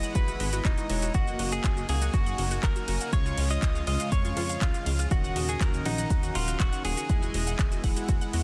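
A straight 4/4 pulse at 121 BPM drives this hopeful, expansive progressive house excerpt in F# major, with an overdriven electronic kick sitting deep and up front from 0.2 s alongside a house kit of cabasa, handclaps, metallic hi-hats and ride cymbal, its hats, percussion and cymbals pumping against the sidechain. A punchy, funky analog bass enters with the kick, its filter pluck giving each note a fast attack and a mellow decay. A clean, twangy electric guitar, recorded direct and picked, carries the melody through digital delay and sidechain pumping, while a very quiet, close violin section bowed with light vibrato traces a second line above it. Around them, a lush supersaw pad holds sustained chords, a glassy, crystalline wavetable pluck warbles through arpeggios in the background with chorus, tape colour and delay, and a retro, glossy polysynth punctuates with stabs. The chords move from Emaj7 through F#6, C# and D#m7 back to Emaj7, and the dense, heavily limited master keeps the sound dry.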